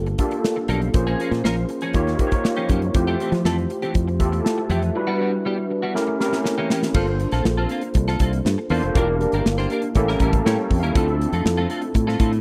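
The sound is dry and close, with a 1970s studio character, and most parts sit up front. This short clip from a longer polished 1980s jazz-funk pop track has an urban, bittersweet mood and a straight 4/4 feel. A barky, gritty overdriven tine electric piano, heard through a combo amp with ensemble chorus, carries the accompaniment over lush chords such as Gm9, Fmaj9 and A7b9. A punchy, direct fingered electric bass anchors the low end, while a clean, compressed electric guitar picks a chorused riff. The acoustic drum kit, with its tight kick, medium-tuned snare, hi-hat and crash, plays a fill at 6.0 seconds that leads into a new passage at 7.0 seconds. In that later stretch the harmony moves through Gm11, Em7b5 and A7b9 toward Dm7, and the electric piano adds its own fill at 10.0 seconds.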